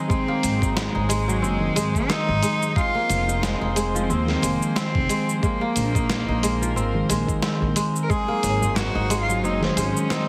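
A lightly swung 90 BPM groove in 4/4 and Ab mixolydian carries this peaceful, earthy organic downtempo excerpt: a dusty sampler-style kit of hi-hat, shaker and snare and a thumpy electronic kick (which drops out at 8.2 s) sit under a woody, gut-strung pizzicato upright bass with tube saturation, while a fingerpicked kora rings crisply through digital delay, a mellow tine electric piano carries 12-bit sampler grit and sidechain pumping, a reedy chamber string section holds sidechained chords in the background, an intimate, airy sul tasto cello sings the melody up front with its own delay, and a very quiet low-tuned tabla joins at 8.4 s, the whole mix bathed in light reverb and heavily compressed like radio, moving from Ab7 through Fm and Bbsus2 back to Ab7.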